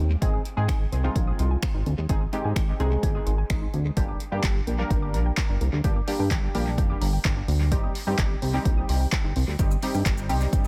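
A punchy analog drum machine drives this energetic, bittersweet dance-pop excerpt at 128 BPM in straight 4/4, its kick, hi-hat, handclaps, finger snaps and shaker sitting up front after entering at 0.2 seconds, with a small-room character and dub echo trailing the hits. Underneath, a glossy, retro chorused synth bass built from pulse and sawtooth waves holds the low end in C minor, pumping against the kick. A funky, nasal polysynth comp with detuned saws and a sub octave plays chords moving from Ab to Gm to Cm/G, its filter sweeping while sidechain pumping and dub echo color it. Further back, a warbly, dusty lo-fi pluck spins arpeggios across a broad range, dark and full-bodied with a noise layer, chorus and echo. A barely audible downlifter and reverse cymbal mark the very start and the final moments at 10.6 seconds, all set in an echo-heavy digital ambience.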